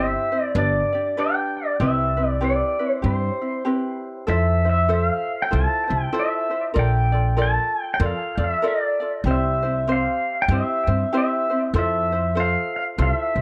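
Hawaiian music with a languid, sunny mood, this short excerpt moves at 97 BPM in 4/4 with a swung eighth-note feel, starting in C major and shifting to F major at 4.3 seconds, where chords like Fmaj7 and Bbmaj7 color the second section. An electric pedal steel guitar carries the melody up front, clean, twangy and compressed, played with fingerpicks, slide and volume swells, and treated with analog delay. A light, fingerpicked acoustic ukulele supplies accompaniment while a woody, thumpy pizzicato upright bass on steel strings anchors the low end, all set in a moderate studio reverb.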